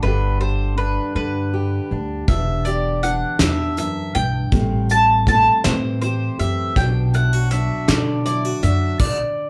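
A short cut from a longer indie folk piece, captured as a band playing together in one room, with a wet studio reverb giving the sound a close, lived-in glow. Set in 6/8 with a building arrangement, the mood is yearning and stirring. A mellow, up-front mandolin carries the melody with picked double strings, over a warm fingerpicked steel-string acoustic guitar with an auditorium body and a thumpy, woody pizzicato upright bass on steel strings. At 2.3 seconds a dark upright piano joins with intimate, boxy arpeggios, its action noise audible and its notes ringing with long sustain, while a soft brush drum kit enters up front with a fat snare, punchy kick, hi-hat and crash cymbal. The harmony moves from G through Em7 and Am7 to Bm.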